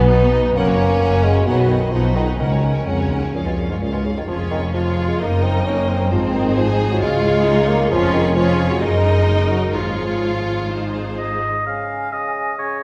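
A mellow solo bassoon anchors the accompaniment in this graceful, cheerful classical-period movement for symphony orchestra, a short cut from a longer piece taken at a quick 131 BPM in 4/4 with a rubato feel, shifting from F# major to Db major at 4.3 s. Above it, a clear, focused violin section carries the melody over a smooth second violin line, expressive viola with portamento, dark woody cellos and a rich double bass section, while soft-mallet timpani briefly sound a round, very quiet C#3 at 2.4 s. Near the close an up-front oboe with light vibrato and a small, pure-toned flute group enter on the second line. The whole ensemble is heard from further back in the room within a wet scoring-stage reverb.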